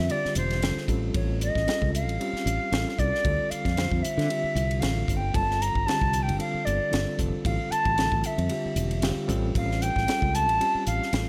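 A studio ambience surrounds this soaring, slick electric jazz fusion excerpt, where a pure, up-front concert flute with tape echo carries the melody over a gritty, overdriven reed electric piano with fast tremolo through a combo amp that adds a fill at 8.8 seconds, while a dark, round fretless bass and a polished, crisp drum kit with a high-tuned snare and punchy kick ride a light sixteenth-note swing beneath chords moving from Fmaj9 to A7alt.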